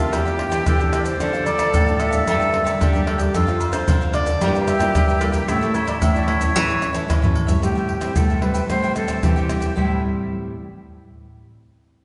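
Nostalgic and bittersweet, this samba and choro excerpt moves at 112 BPM in a straight 4/4, settling into A minor at 7.6 s after a drum fill. A soft-attack, distant clarinet carries the classical-style melody until 7.4 s, while a breathy, chiffy jazz flute with vibrato traces a second line, a crisp picked cavaquinho sits in the background, and two fingerpicked nylon-string guitars, one with audible finger squeak, supply full-bodied accompaniment and a deep bass. Agogo bells, maracas, tight surdo, pandeiro and tamborim sit up front with hard hands in a small-room sound, all within the roomy wash of a concert hall.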